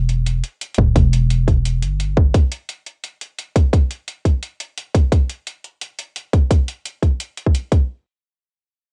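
Tense and spacious, this half-time drum and bass excerpt opens with a growling, buzzy 808-style bass sitting up front until 2.3 seconds. Metallic electronic hi-hats enter at 0.1 seconds and a tight, up-front electronic kick drum follows at 0.8 seconds, both layered drum parts carrying a cassette tape character and the sound of being re-recorded in a small room. The dry home cassette recording has little reverb, and the drums' swung half-time feel drives the clip.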